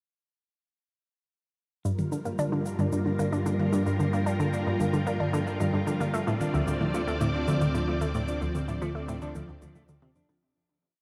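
A dark, cavernous wash of long reverb opens this brief, expansive piece of cosmic sequencer-driven space music, where a bright, nasal analog pluck riff and a very quiet hollow-body guitar arpeggio each cycle a 7-step loop that drifts against the bar over lush vintage string-machine chords, a warm, evolving pulse-width drone bass entering at 2.5 seconds, and a light electronic cabasa and high-tom pulse with tape echo, moving from Gm7 to Dm7 before fading out from 7.6 seconds.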